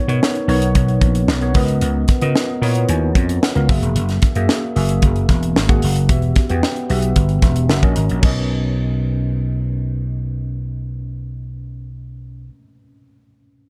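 A dark, dry production frames this glossy, urban slice of polished 1980s jazz-funk pop. A crisp, airy fusion kit with a high-tuned snare and punchy kick sits up front beside a bright, growly slap bass. A mellow, worn, slightly out-of-tune tine electric piano with analog chorus plays lush extended chords and adds short fills. The drums drop out at 8.4 seconds, the bass at 12.5, and the electric piano carries on alone until 13.7.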